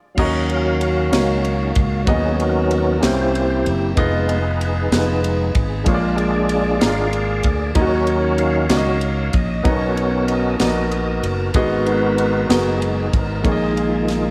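A tonewheel organ opens at 0.1 s with sustained chords, full and lightly overdriven through a slow rotary speaker with chorus vibrato and audible key click, and it carries a solo through to 14.3 s in this fervent, soulful slow gospel piece in 6/8 at 63 BPM in Eb minor. A clear, woody upright piano accompanies, while a round, punchy fingered electric bass sits up front and a tight funk drum kit adds a dry, airy sound with a high-tuned snare, crash and ride cymbal. The harmony moves from Ebm7 through C7b9, Fm7b5 and Bb7 before settling on Bb7sus4, all in light reverb with small room ambience.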